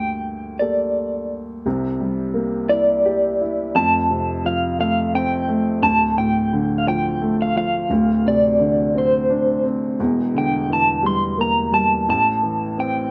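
An electric guitar through a small old amp and an upright piano begin together, opening this reflective, heartbroken acoustic folk-pop ballad, heard here as a section cut from a longer piece. The guitar carries the melody in a high register, its picked tone slightly broken-up and lo-fi, shimmering with tremolo. Beneath it, the woody, vintage-sounding upright piano plays the accompaniment, smooth in character and reaching down into the deep bass. The music moves in an unhurried, straight 6/8, with the harmony passing through chords such as C7, Dm and Em7b5 before arriving on Am at 12.1 seconds. Both instruments sit up front in a close, detailed recording with light reverb, and both play on to the end at 13.1 seconds.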